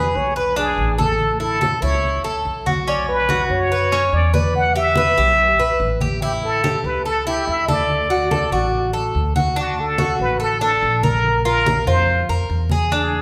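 Over a straight, danceable four-beat pulse, this sunny Cuban son and guajira fragment opens with a plunger-muted trumpet up front, singing a clear, jazz-style wah-wah melody with vibrato, while a metallic, double-strung Cuban tres picks bright arpeggios close beside it. A woody, growly pizzicato upright bass anchors the harmony through chords such as Aadd9, Em, A7 and D, and soft-handed, low-tuned congas join at 0.2 s from the background. The whole group sits in the lingering reverb of a recital hall or church.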